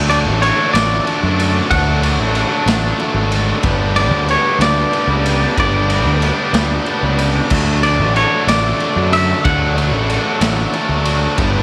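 Lightly reverberant and gritty, this upbeat, jangly indie rock excerpt moves in 6/8 at 62 BPM over D, Gadd9 and back to D, with a round, fuzzed-out fingered bass up front, a punchy, saturated garage drum kit ringing in a bright stone room, two overdriven picked guitar riffs in the background (one biting, the other a cranked stack guitar with lush chorus and slapback echo), a clean, compressed twangy lead guitar carrying the high melody with its own slapback echo, and a very quiet, reedy vintage combo organ holding sustained chords with heavy vibrato.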